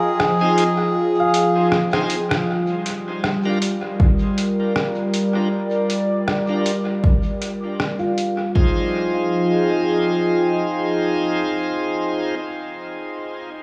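Ambient dub at 79 BPM in F dorian with a spacious, deep mood and a lightly swung 4/4 feel, opening with a reedy, breathy melodica phrase that ends by 1.7 s over a warbling, detuned tape-like pad of sustained chords, ringing fingerpicked harp arpeggios set in the background, muffled pitched-down sampler hi-hat and rim click, and bright, shouting tonewheel organ stabs with slow rotary speaker and dub echo, while filter sweeps move through the organ and harp as the chords shift from Fm7 to Gm7 and a punchy overdriven electronic kick pushes up front from 4.0 s, all bathed in a lush concert-hall reverb.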